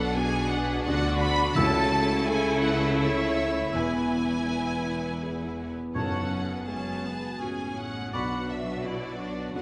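Longing and sorrowful, this short cinematic passage in 3/4 moves with a rubato feel, cut from a longer piece and set in a wet recital hall reverb. A clear, focused violin section carries the bowed melody high above, with vibrato, while a lush second violin line, a close viola section and a dark, intimate baby grand piano with audible action noise sit in the background. Rich cello and double bass sections anchor the bass, the cello intense and smooth-topped and the double bass focused and lush, and a mellow French horn section holds tight sustained chords as a very quiet concert harp rings out fingerpicked arpeggios. At 1.6 seconds, woodwind second lines join: an airy, tongued flute group, a solo oboe in classical style and a distant, roomy solo clarinet that stays very quiet. Very quiet timpani struck with medium mallets mark the moments around 1.6 and 6.0 seconds, as the harmony passes from Bm through A/C#, E and F#madd9 before returning to Bm.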